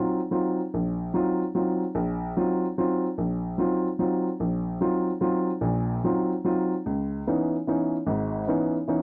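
A warm, natural-sounding baby grand piano plays solo from the start, sitting up front in a dry, close booth with a 1970s studio character. This cool, hypnotic jazz piece swings in 3/4 at 147 BPM in Eb dorian. The piano stays in its low and middle register over an Ebm69 chord, then shifts to C#m9 at 6.9 seconds in this 9-second passage cut from a longer piece.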